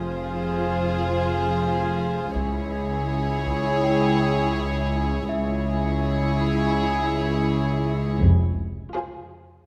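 Strings and a worn, slightly out-of-tune celesta open together on F minor in this uneasy, tense suspense score excerpt at 82 BPM, with distant, floating sul tasto violins carrying the melody over a close second violin line, dark woody violas with vibrato, and a cello and up-front double bass section holding the low end, while a distant taiko ensemble struck with hard sticks comes in at 2.4 seconds as the harmony shifts to D-flat minor and again at 8.2 seconds on the return to F minor, all set in a moderate scoring-stage reverb.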